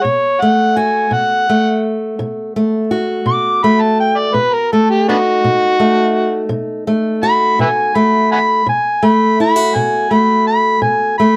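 Gritty and rollicking, this short excerpt of acoustic country blues moves at 56 BPM in a straight 12/8 over a B7 chord. An overdriven, amplified harmonica takes a jazz-style solo up front, full of vibrato, tongue slaps and scooped notes with a soft attack, while a warm fingerpicked steel-string acoustic guitar accompanies, also up front, in a dark production with moderate studio reverb.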